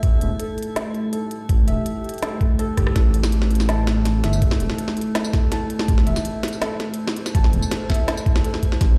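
A half-time drum and bass groove at 164 BPM in 4/4 drives this dark, cinematic excerpt in A minor, tuned to A4 = 436 Hz. An up-front, compressed, pitched-down kick thumps with gritty, tape-toned weight. An electronic kit, re-recorded in a large room, adds a woody snare, crisp hats, rim clicks and tambourine, and breaks into a drum fill at 2.8 seconds. Beneath it a detuned sawtooth bass rumbles and beats, saturated and forward in the mix, over an A5 chord. A deep, moody pad sustains slow-attack chords with chorus, reverb, vintage 12-bit sampler texture and sidechain pumping, while a soft, felt-muted upright piano plays intimate arpeggios with audible action noise, the same 12-bit character and dub echo. Far in the background an eerie, metallic FM drone warbles on A4, and the whole mix sits in a large studio reverb, as though played through a big sound system in a bare room.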